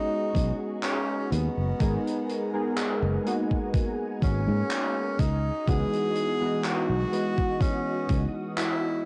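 Melancholic and woozy, this short vaporwave excerpt drifts at 62 BPM in C# dorian over B69, G#m9 and C#m11 chords, with a close-miked tenor saxophone carrying the melody with light vibrato through cassette tape and tape echo, warbling detuned synth keys in analog chorus, a faint silky string machine sustaining high chords, a round foam-muted fingered bass with tube saturation and a thumpy sampler-style kick up front from 0.3 s, and a gritty indie kit adding handclaps and hi-hat, all set in light reverb with a dull cassette-recorded top end.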